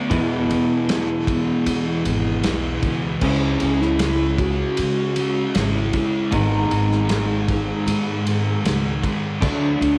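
Shoegaze and dream pop rock at 77 BPM in 4/4, this blissful, dreamy cut from a longer piece moves through E, C#m, G#m and D in a small room captured as a home cassette recording. A soft, round sine lead carries the melody with chorus, analog delay and gliding portamento, while a slightly broken-up guitar through a small old amp, bathed in reverse reverb and tape, and a dark fuzz guitar with lush chorus both play riffs. A woody, growly pizzicato upright bass and a loose indie kit with punchy kick, medium-tuned snare and dark crash and ride cymbals come in at 0.1 seconds.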